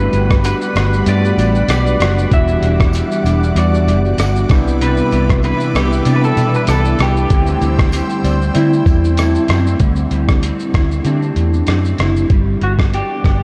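A lightly swung 16th-note groove at 96 BPM in 4/4 drives this sunny, dreamy indie and bedroom pop fragment in G major, with a gritty, overdriven sampler-style drum kit of thumpy kick, hi-hat, rim click and shaker sitting up front beside a dark, round, foam-muted fingered bass, while a twangy guitar through a small old amp carries the melody with analog chorus and delay, and a slightly broken-up background guitar with ensemble chorus and vibrato, square-and-sawtooth analog keys with a filter sweep, and a lush, detuned unison pad with tremolo fill out Gmaj7, Em9, Cmaj9 and D9sus4 chords; a very quiet, jingly tambourine glints until 9.7 s, synth keys add a fill from 7.9 s, and the pad drops out at 9.8 s before the phrase settles on G, all soaked in moderate cathedral reverb and cassette-tape haze.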